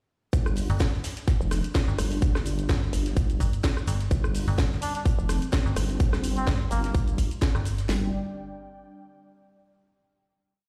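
A nasal, saturated vowel-sweep wobble bass drives this gritty, aggressive bass house piece at 127 BPM, its modulated phrases changing wobble speed and answered by chopped, metallic FM bass on G1, both pumping with sidechain. Layered garage drum kits bring a tight four-on-the-floor kick, cracking snare, programmed hats, shaker and rim clicks with 55% swing on 16ths, while a very quiet acoustic breakbeat loop and an airy, detuned sawtooth pad sit in the background of a bare room washed in large studio reverb. At 4.8 seconds a veiled, cup-muted trumpet slips in with short, scooped jazz phrases through dub echo, and after the drop ends at 7.9 seconds a final chord carries the piece to its close.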